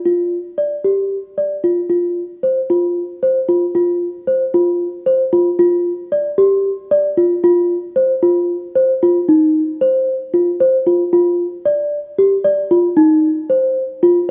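A small, bell-like celesta with a delicate, mellow felt-hammer tone plays solo and up front in this hypnotic, pensive contemporary instrumental in 7/8, a fragment of a longer piece, set in a light reverb and moving into a new section at 9.3 seconds.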